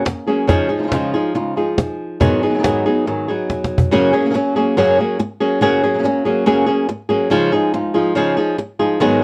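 A fingerpicked flamenco guitar carries the melody up front with a warm tone, while a second, darker guitar with fresh strings and audible finger squeak adds chordal stabs, and a woody, dry cajon with faint snares drives the fiery, proud feel until a fill at 3.5 seconds ends its part at 3.9 seconds, all inside this excerpt's light reverb and worn, warbling cassette-tape pitch drift.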